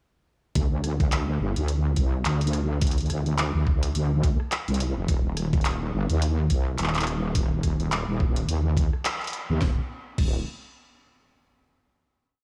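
Glitch hop at 106 BPM with a swung 16th feel, this gritty, funky piece drops in at 0.6 seconds with a heavy, detuned sawtooth wobble bass ranging from D1 to Eb2 with chorus and tube saturation, a compressed, pitched-down thumpy kick, and a layered electronic kit of closed hats, rim clicks, handclaps, a cracking snare and crash in light studio reverb, hitting a band accent at 9.0 seconds before a final chord rings out from 9.6 seconds.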